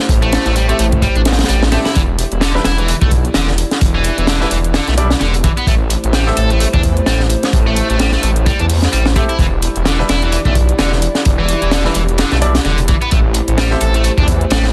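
A dark, moody analog pad with lush chorus and sidechain pumping opens this energetic, funky breakbeat excerpt in E minor at 129 BPM, joined almost at once by a thick, menacing detuned saw bass, a crunchy, punchy acoustic break kit with a high-tuned snare, layered electronic hats and a sludgy, overdriven double-tracked guitar riff with tape echo. A brilliant grand piano adds intimate stabs in the background from 0.7 to 6.3 seconds and again from 9.2 seconds, its tape echo and audible action noise sitting over a swung groove that moves between Am7 and Em7. The small-room sound is dense and heavily limited, with lossy compression artefacts.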